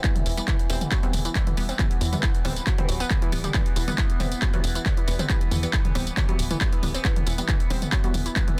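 Dense and heavily limited with a digital ambience, this relentless, hypnotic cut of driving peak-time techno at 137 BPM in E minor rests on a single Em chord, with a heavy, tape-warm electronic kick up front beside a techno kit of warm hats, handclaps, tambourine and toms, a tight, punchy sequencer bass entering at 0.3 s with sidechain pumping, a round, nasal analog pluck riff coloured by chorus, tube saturation, cassette tape and dub echo, muted, resonant dub chord stabs with phaser and dub echo tucked in the background, and a sustained drone of moving overtones washed in chorus, reverb and phaser.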